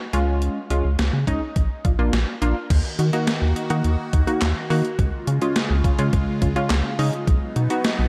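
A dark, lightly reverberant digital ambience frames this driving, nocturnal synth-pop excerpt in Eb minor at 105 BPM, where a rubbery square bass, a punchy chorused polysynth comp and a thumpy gated 80s drum machine with handclaps and a gated reverb snare run from the start over Db and Bb, before a swirling phased analog pad enters at 2.7 s as the chords move through Ebm, Db and B.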